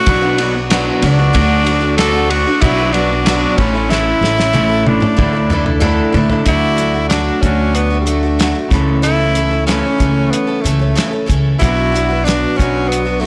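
A bright, punchy tenor saxophone carries the melody up front, close-miked and solo in a pop style with vibrato. This short cut from a longer folk rock and heartland rock piece moves at 93 BPM in a straight 4/4 in D major, with a nostalgic, warm mood. Beneath it, a picked twelve-string acoustic guitar adds shimmering, octave-doubled accompaniment with a boxy edge, while an electric guitar through a small old amp plays a twangy, slightly broken-up riff with spring reverb. A woody pizzicato upright bass with gut strings gives a thumpy low end, and a cloth-damped, thuddy drum kit with dark cymbals, a tight kick and a rolled-off top plays a fill from 3.9 to 6.5 seconds. The chords move from Bm through D, A and Dsus2, then settle on D at 6.5 seconds before passing through A/C# to Bm, all heard in a small room on a blown-out, overdriven recording.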